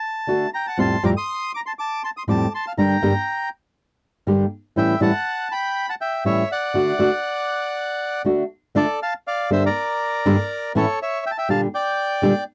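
This tango excerpt, cut from a longer piece, moves at 121 BPM in 4/4 with a rubato feel, and its mood is passionate and tense. A reedy, dark bandoneon carries the melody up front, its mid-forward tone ranging from A4 to Eb6. Also up front, entering at 0.3 seconds, a fingerpicked flamenco guitar with fresh strings and an acoustic character supplies the accompaniment from F2 to A4, sitting slightly louder than the bandoneon. The opening passage moves through D, Fadd9, Gm and A7, and at 8.8 seconds the music settles into D minor, turning through Dm, Gmadd9 and A before landing on Gm. Light reverb touches a dry, close recording with a 1970s studio flavor, tuned to A4 = 441 Hz.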